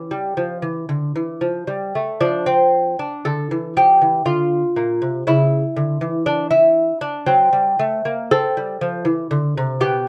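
In a slow triple metre at 59 BPM, this baroque-style classical dance moves with a rubato feel, its pulse stretching and relaxing as it unfolds in D minor with tuning set at A4 = 439 Hz. A solo lute carries the whole 10.1-second fragment, cut from a longer piece, sounding fingerpicked and delicate on gut strings, with the shimmer of double courses and some octave-doubled strings filling out its range from Bb2 to A4. The mood is solemn yet flowing, opening on a rootless A before settling onto D minor at 2.2 seconds. From there the harmony wanders through C# minor and F# diminished before arriving on A minor and an A minor eleventh near the close at 9.3 seconds. The lute sits up front in a dark, warm production with light reverb, giving the instrument an intimate, gently resonant presence.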